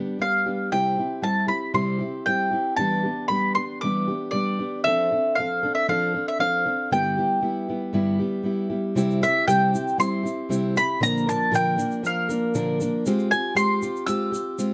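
A straight, even 4/4 pulse carries this short passage of acoustic folk for a duo or small band, drawn from a longer piece, with a peaceful, hopeful mood. A picked, plugged-in steel-string acoustic guitar sits up front with a warm, concert tone, laying down the accompaniment from the opening moment through chords that move from G and C to Em7, F6 and G6. The mandolin enters at 0.2 s and carries the melody high above, its double strings giving a mellow, woody sound that sits close to the listener. At 9.0 s the harmony shifts to C, then Bb, closing on Fmadd9/Ab, and a tube shaker joins quietly, close and dry, with a grainy, bright texture. A moderate small-room ambience gives the whole an intimate, natural setting.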